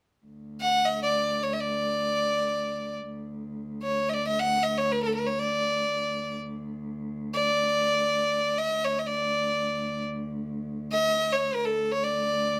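A moderate studio reverb gives this short Persian modal passage, cut from a longer piece, a close, lightly resonant space, unfolding in free time in D dastgah chahargah with a stately, passionate mood. A muted cello sounds a dark, veiled drone on D2 from 0.3 seconds, bowed con sordino with a smooth top and vibrato, sitting low beneath the melody. From 0.6 seconds a single bright, earthy violin carries the line up front between A4 and F#5, its airy bow and light vibrato colouring every phrase until both parts end at 12.6 seconds.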